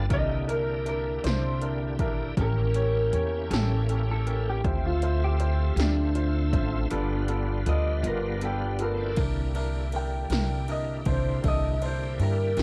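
A slightly broken-up electric guitar through a small old amp carries the melody with a phaser, its clean solo running across this short slow-blues excerpt in 12/8 at 53 BPM, with a break from 6.9 to 9.2 seconds, over a rollicking, gritty groove in C mixolydian moving through C7, A7b9, Dm7 and G7. Beneath it, a woody, thumpy upright bass sits up front with transformer saturation, while punchy, gated 80s electronic pad drums with metallic hats are pushed into overdrive. A clear upright piano plays accompaniment and a bright, shouting tonewheel organ holds sustained chords through a slow rotary speaker and chorus vibrato, all captured as a home recording on cassette with digital ambience.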